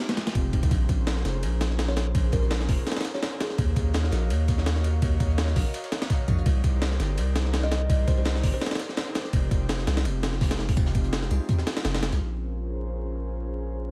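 A lightly swung jungle breakbeat drives this raw, atmospheric drum and bass fragment, with a gritty, compressed sampler-style kit up front (thumpy kick, high-tuned snare) layered with a very quiet, dark, saturated second breakbeat kit, both of which stop at 12.2 seconds. Beneath them a deep, sine-toned 808-style bass holds long, decaying notes, while a soft, breathy, detuned pad with chorus sustains minor ninth chords and takes a filter sweep over the closing seconds. A woody, thumbnail-plucked kalimba with 12-bit sampler grit and dub echo sits in the background for two brief phrases from 1.9 and 7.6 seconds, all set in a dry mix coated in vinyl crackle.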